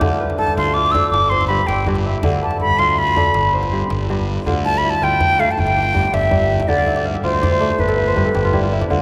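A flowing 12/8 pulse at 108 BPM in dotted quarters carries this reflective excerpt of West African string and xylophone music in D dorian, with a ringing, fingerpicked kora spinning crisp arpeggios up front, a fuzzy overdriven fingered electric bass rumbling low, and a soft-handed djembe sitting close and dry in the background. A pure, straight-toned concert flute enters at 0.4 seconds with a crisp attack to lead the melody, taking a solo through the first half, before the kora adds a fill from 6.7 seconds as the harmony rocks between Dm and G-based chords. The whole excerpt is bathed in a long cathedral reverb that lends it the spacious glow of a church or concert hall.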